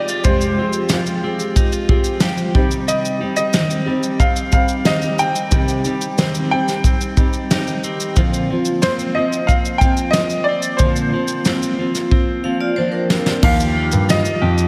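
A big, arena-sized sound with concert hall reverb frames this carefree, easy-going acoustic pop excerpt at 91 BPM, where a bright, slightly detuned upright piano carries the melody with slapback and tape echo over a full-bodied, double-tracked fingerpicked steel-string guitar and a clean, compressed electric guitar playing arpeggios. A soft brush drum kit sits up front with a fat snare, punchy kick, shaker and dark cymbals, rolling into a fill at 12.1 seconds as a metallic, ringing vibraphone with hard mallets adds a second line from 12.4 seconds. At 13.4 seconds the harmony moves from Fmadd9, Cm and Bbadd9 to Ebadd9, and a worn concert grand piano enters with deep bass notes.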